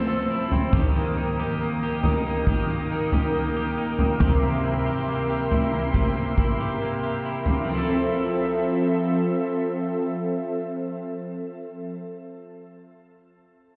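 A lush, detuned sawtooth pad holding thick, nasal chords with a chorus sheen opens this blissful, ethereal dream pop excerpt alongside a twangy electric guitar at the edge of break-up, picking arpeggios through subtle chorus and tape echo over a drift from Fmaj7 through Eb and C7. A raw garage drum kit of punchy, saturated kick and toms joins at 0.5 seconds with a gritty, pumping stone-room sound, then drops out at 7.7 seconds as the harmony returns to Fmaj7 for a new section. The whole mix sits in a moderate shimmer reverb and sounds muffled, as if heard through a wall, cut from a longer piece.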